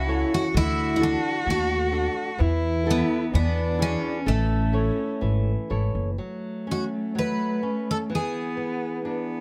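A picked twelve-string acoustic guitar leads this mournful, passionate fado-style ballad, its shimmering, octave-doubled melody sitting up front at a rubato 64 BPM in 2/4. Beside it a dark, bowed cello sings a close, expressive second line with vibrato and portamento, while a fingerpicked flamenco guitar with fresh strings and audible finger squeak fills in the accompaniment, and a woody pizzicato upright bass anchors the low end until 6.2 seconds. At that point the music turns from A major to F# minor, moving through F#m to E7 before this short section of a longer piece breaks off at 9.4 seconds, all captured with close, detailed microphones and light reverb.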